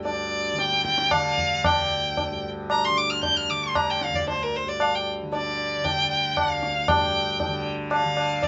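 In a straight 5/4 at 115 BPM that speeds up throughout, this Hindustani classical piece in raga malkauns on D, tuned to A4 = 442 Hz, unfolds with a solemn, longing mood, its music shifting into a new section at 6.9 seconds. A mellow, shimmering tanpura drone buzzes softly from the start, low-tuned tabla with a short ring and a live-room character enters at 0.1 seconds, and a single bowed violin, bright and focused with vibrato, carries the melody up front yet with a distant quality. Cut from a longer piece, it was recorded outdoors with little reverb and nothing above 7.8 kHz.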